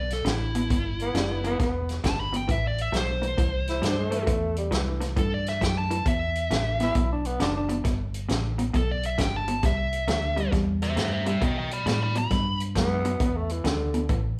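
A growling, breathy tenor saxophone with scooped notes and a raspy subtone carries a soulful second line from 1.0 s, drops out at 7.8 s and returns near the close of this smoky electric blues shuffle in a swung 4/4. A dark, smooth, overdriven lead guitar sits up front with the melody until 12.6 s. Beneath it, a slightly broken-up, lo-fi guitar through a small old amp plays the riff, a foam-muted, round fingered bass holds the low end, and an acoustic country kit with a punchy kick and rolled-off top plays hi-hat, kick and snare, all heard as a band playing live in one large studio room with moderate reverb.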